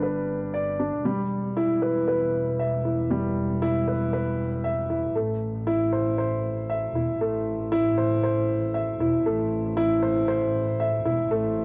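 A straight 4/4 pulse at 117 BPM drives this intimate, cinematic piano and strings electronica piece in A minor, tuned slightly sharp at A4 = 441 Hz and cut from a longer piece. An upright piano, woody, natural and up front, carries the riff from G3 to E5 across the whole passage, colored by cassette tape character and an analog delay. Beneath it, a chamber double bass section holds the low end between E1 and A1, bowed sul tasto with a soft attack and light vibrato, close and warm as an ensemble. The harmony opens on G, moves to Em at 1.1 s, and lands on Am at 5.2 s, where a build-up begins and runs to the end at 11.6 s. The home cassette recording sits in a damp, snug booth ambience with a short 0.2-second decay.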